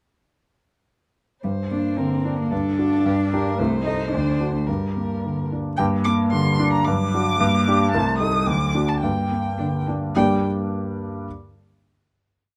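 A straight 2/4 pulse at 111 BPM drives this short, quick classical-period movement for piano trio in G minor, and its mood is dramatic and stormy. The clear grand piano sits up front with rocking broken chords, long sustain and audible action noise, carrying the harmony from 1.4 s until a final chord that rings to 11.3 s. A single distant violin sings the melody with vibrato and portamento, expressive and warm-toned, while one cello plays close and intimate, bowed sul tasto with a soft attack, an airy bow and light vibrato. The cello weaves independent inner lines, sustains chords, plays chords in the rhythm of the tune and answers at phrase ends, and both strings fall silent at 10.5 s. The phrase is heard twice, circling from G minor through an A diminished chord over C to D7, a plain D the second time, and back, all set in a dark, warm production with light reverb.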